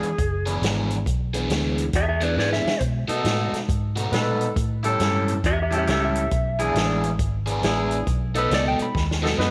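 A swaggering, soulful electric blues shuffle at 137 BPM in E opens with a dark, slightly broken-up lead guitar through a small old amp, shimmering with vibrato and slapback echo, over a picked, overdriven semi-hollow guitar riff colored by phaser, a round, foam-muted fingered bass, and a punchy vintage drum kit with a rolled-off top. The lead drops out at 2.8 seconds after a drum fill as the chords move from E7 to B7, and a tight, dark horn section enters with jazz-style stabs at 3.1 seconds. The lo-fi lead returns at 5.5 seconds over A7 and E7, all inside a small, lightly reverberant room, with another drum fill closing this cut from a longer piece.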